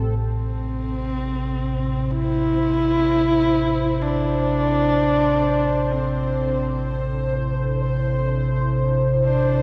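Desolate and unsettling, this dark ambient drone excerpt in A minor drifts in free time over an ominous, rumbling low drone, as a husky, bowed horsehead fiddle sits up front with a close, intimate melody full of vibrato and portamento trailed by diffuse delay, a moody, detuned analog pad fades in from 0.2 s in the background, and a bright, resonant bubbling texture of random filter steps joins at 0.8 s, the whole set inside a cavernous cathedral reverb and the warbly pitch drift of worn cassette tape.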